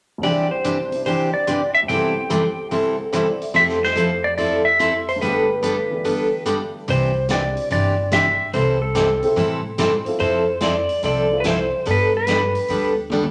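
Set in a roomy studio reverb, this cheerful, playful western swing excerpt in C major swings along at 144 BPM as an up-front clean lap steel guitar sings the melody with slide and volume swells over a bright, full-bodied picked acoustic guitar, a dark, mellow upright piano and a distant big-band drum kit with a rolled-off top, before a woody pizzicato upright bass joins at 6.9 seconds and a drum fill lands at 13.1 seconds.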